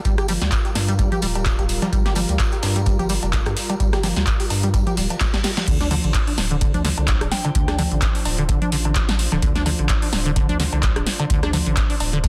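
A swung 4/4 acid house groove, hypnotic and raw, is driven by a deep electronic kick, a punchy electro drum machine with metallic hats, claps, congas, cowbell and rim clicks, a very quiet gritty, pitched-up breakbeat kit, and a jingly tambourine that drops out at 5.7 seconds. A squelchy, resonant sawtooth acid riff with tape echo rides over a thick, saturated sub bass, both pumping against the kick, while a smooth, warbling analog pad holds sustained chords from Gm7 to Dm7. A reverse cymbal and drum fill lead into the drop at 5.7 seconds, and a soft, pure FM bell with phaser and delay sounds briefly in the background, all under a dense, heavily limited modern master.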